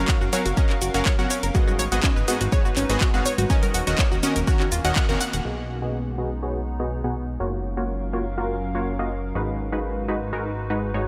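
Pumping supersaw stabs, punchy and airy, open this uplifting, expansive progressive house cut at 123 BPM in F# major, riding over a fat, detuned analog bass, an overdriven electronic kick, a house kit with bright hats, handclaps, shaker and crash, and bright, compressed congas tucked in the background. A round analog pluck spins chorused, tape-echoed arpeggios while an evolving, morphing wavetable pad holds warbling chords beneath, moving through F#maj7, G#m7 and D#m7 until a band accent at 5.0 seconds, after which the kick, congas and pluck drop away. From 5.5 seconds filter sweeps move across both the supersaws and the pad over B6 and a return to F#maj7, all set in light digital ambience.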